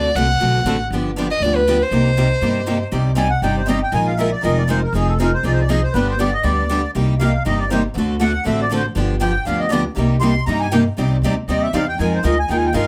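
A small room gives this short, fiery cut of jazz manouche a moderate, close ambience, with the instruments heard up front. At a brisk 238 BPM in 4/4 with a swung eighth-note feel in C minor, a violin with an airy, sul tasto bow and light vibrato carries the melody only until 2.8 seconds. At 3.2 seconds a reedy, sweet accordion with light tremolo tuning enters, and it takes the solo from 2.9 seconds to the end, sounding dry and close-miked in its upper register. Two bright, boxy parlour steel-string guitars provide picked accompaniment throughout, one a little louder and the other carrying fresh strings and audible finger squeak. Underneath, a pizzicato upright bass with gut strings gives a woody, dark, thumpy foundation. The harmony moves through D7, G7 and Cm7 before settling on figures like Cmadd9, Bb7sus4 and Fm7, keeping the minor-key swing driving.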